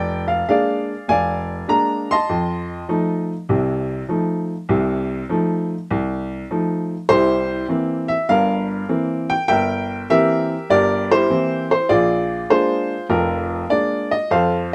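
Sophisticated and relaxed, this short solo jazz excerpt swings at 100 BPM as a lone upright piano, with a woody, boxy tone and short sustain, sits up front in light reverb, ranging from F1 to C6 over a bluesy movement through Bb7, F7 and C7 before returning to Bb7 at 11.9 seconds.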